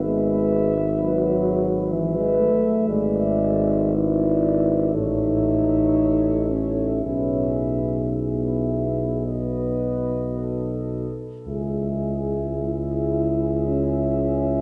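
A hushed, tender brass band chorale opens at once in a spacious cathedral acoustic, with a dark, distant cornet singing the melody over a shadowy French horn section carrying the second line. Beneath them, a smooth-topped euphonium and a softer, very quiet second euphonium, both with light vibrato, fill out the accompaniment, while a mellow, up-front tuba anchors the bass. The rubato, hymn-like harmony moves from E/G# through A and B to a closing C#m at 11.5 seconds, as this fragment of a longer piece lingers in the lush reverberation.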